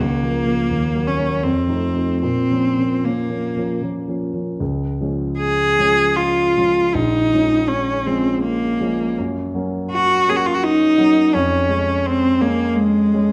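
A rich, close, bowed cello sings a yearning, elegiac melody with smooth vibrato over the mellow, deep-bassed accompaniment of a dark concert grand piano in this romantic classical duo fragment, moving in a rubato 3/4 at 73-90 BPM through a shadowed minor opening before settling into Db major at 4.6 s, all within the resonant wash of a recital hall.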